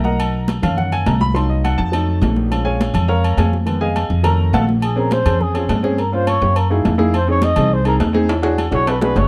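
A driving, straight 4/4 pulse at 208 BPM sets up this sophisticated Afro-Cuban jazz excerpt, with woody, thumpy pizzicato upright bass up front, ringing high-tuned congas in the background, and metal-shelled agogo bells and timbales, while an intimate upright piano with audible action noise solos until a dark, breathy trumpet with vibrato and scooped notes takes the melody in Bb minor at 4.8 s, ahead of a fill at 8.3 s, all in a dark production with light reverb.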